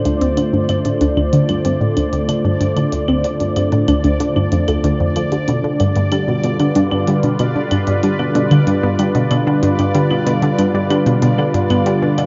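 A straight 4/4 pulse at 94 BPM drives this mysterious, hypnotic stretch of sequencer-driven ambient space music, cut from a longer piece, with clicky electronic hi-hat and claves ticking quietly behind a round, nasal analog pluck riff that sits up front with chorus, phaser and delay. A lush unison pluck spins delayed arpeggios in the background through a filter sweep, while an evolving, ring-modulated resonant pad holds chords from Dm7 to G7 at 5.5 seconds and a bubbling texture of random filter steps hovers on a high D. The mix sinks into a huge reverb with a 9.0-second tail and a dark, softened top end.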